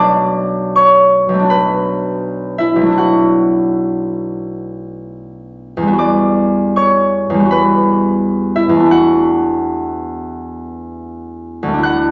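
The rhythm is loose and rubato, with uneven beats drifting around 81 BPM in 4/4, giving this gentle, wistful classical excerpt for solo concert harp an unhurried, breathing feel. The fingerpicked harp sits up front and rings out across a range from B1 to F#6, moving through Bm7, Dadd9/B, Em9 and Bm7/E in B minor, tuned slightly high at A4 = 445 Hz. A wet recital hall reverb surrounds the harp, and the top end is softened, with nothing above 7.9 kHz.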